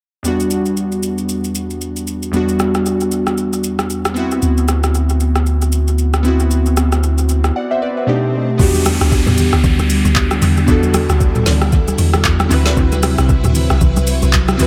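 An echo-heavy, lightly reverberant mix opens this late-night, soulful amapiano excerpt in E minor at 115 BPM, with glassy digital keys drenched in chorus and dub echo riding over a swung R&B drum kit of soft kick, woody snare and metallic hats, while a punchy sine sub bass arrives at 4.4 s, and an electronic swell and downlifter carry a brief break into the drop at 8.6 s, where a round, percussive log drum bass, shimmering vintage string-machine violins pumping in the background, and very quiet thick-skinned congas join in.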